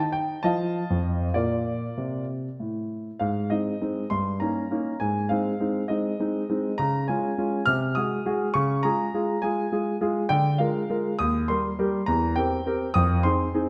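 Classical-period piano sonatina in a graceful, elegant 6/8 at 67 BPM, played by a solo grand piano with a natural, up-front, warm tone in a reverberant recital hall, moving from B-flat major into A-flat major at 3.2 seconds and then into E-flat major at 10.3 seconds, where this brief portion of a longer piece breaks off on an F minor seventh chord.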